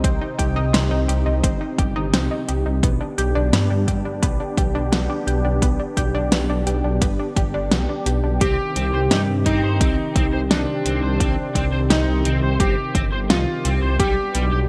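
Moody and nocturnal, this synthwave excerpt moves at 86 BPM in C harmonic minor, built on a deep, rumbling detuned saw bass that sits up front and pumps under the sidechain alongside a smooth, slow-blooming analog pad, while a round, chorused analog pluck spins tape-worn arpeggios until 8.4 seconds. A punchy overdriven electronic kick and a pop kit with a fat snare and metallic hats drive the straight 4/4 groove, both with a small-room grit. At 8.4 seconds a clear, vintage electric grand piano takes the melody with delay as a crunchy, double-tracked overdriven guitar riff joins, all framed by a bright 1980s-style digital sheen and a moderate plate reverb.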